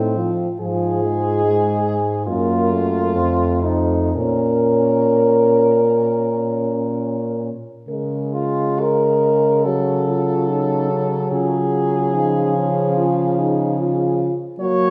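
Classical writing for horn quartet, melancholic and solemn, cut from a longer piece and unfolding in a flexible rubato 4/4. A clear French horn with light vibrato carries the melody up front beside a warm bass horn, also lightly vibrato-shaded, while two mellow horns fill the middle: one sets a second line in the background, the other plays a soft-attacked accompaniment with its own light vibrato. A reverberant recital hall places the players some distance back, and a new section begins at 7.9 s.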